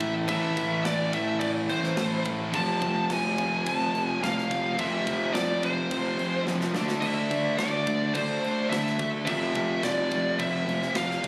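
A dark, high-gain lead guitar sits up front from the first second, carrying the melody between C5 and A5 over a relentless heavy metal groove at 107 BPM in a straight 4/4. Behind it, a double-tracked cranked stack guitar with bright overdrive and a heavy high-gain guitar play the riff in the background, while a very quiet sludgy distorted guitar adds a warm, picked layer in the same F2 to D4 range. A fuzz-soaked picked electric bass, round and amped, anchors the low end, and a tight, polished drum kit brings a punchy kick, a medium-tuned snare and bright crash cymbals, with a short fill at 6.5 s. The harmony moves from Am to F, then shifts to D5 and F5 power chords in the latter half of this 11.3-second cut from a longer piece. Captured on a phone in a club, the sound carries the room's ambience, giving the drums an airy, big-room presence.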